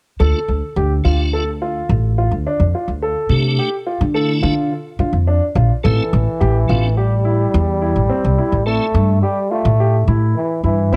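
A straight 5/4 pulse at 106 BPM drives this tense progressive instrumental in D minor, anchored by an up-front, woody pizzicato upright bass while a dark, smooth baby grand piano plays arpeggios through cassette tape echo over a move from Dm to Am. A piping, lightly overdriven tonewheel organ with key click, chorus vibrato and a slow rotary speaker supplies accompaniment until 8.9 seconds, and from 5.8 seconds a punchy, close-miked trombone adds a jazz-style second line with vibrato. The home cassette recording carries light reverb and a small-room ambience, and this excerpt is cut from a longer piece.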